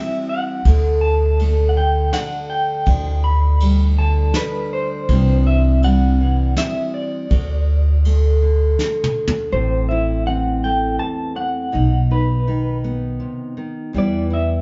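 A warm room sound frames this short pastoral folk passage, with a live band feel, moderate reverb and a softened top end. At an unhurried 81 BPM in 3/4, a fingerpicked steel-string acoustic guitar sits up front, carrying the accompaniment in D mixolydian. An electric guitar through a small old amp carries the melody high above it with a tremolo effect and a slightly broken-up, compressed, lo-fi character. From 0.7 seconds a thumpy, woody pizzicato upright bass anchors the low end, while a soft brush kit with a tight kick, medium-tuned snare, ride and toms plays until a drum fill at 8.8 seconds. At 9.5 seconds the harmony moves from the opening Cadd9, G/D and D colours toward Am, B and Em, giving the close of this warm fragment a more searching, minor-leaning turn.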